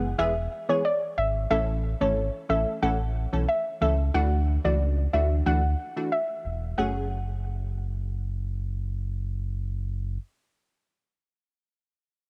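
A straight 4/4 dancehall groove at 91 BPM in F# minor sets a tough, hypnotic mood in this cut from a longer piece: a deep sine sub bass with octave anchors the low end beneath crisp, detuned wavetable chord stabs colored by cassette tape, while a soft, round pluck melody with chorus and a dark noise-layered edge enters at 0.2 s and stops at 8.7 s, the home cassette recording bathed in light digital reverb as the chords move from E through A and Dadd9 to F#madd9.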